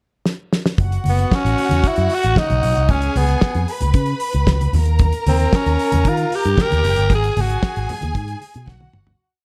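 A dry, damped drum kit opens with a fill in a brief pickup bar, then settles into a four-on-the-floor disco beat with a fat snare, a tight kick and open hats on the off-beats. At 0.8 seconds the rest of the rhythm section and strings arrive together. A picked electric bass through an envelope filter plays a syncopated line with chromatic approach notes, and a lush studio violin section bows long high lines with vibrato and portamento. Very quiet, low-tuned congas add a syncopated groove underneath. A growling tenor saxophone comes in up front at 1.1 seconds, playing a raspy, punchy, motif-based melody in song-like phrases with a slapback echo. The driving, danceable piece, set in a small room with a dark production, fades out from 7.1 seconds while the drums close with one more fill.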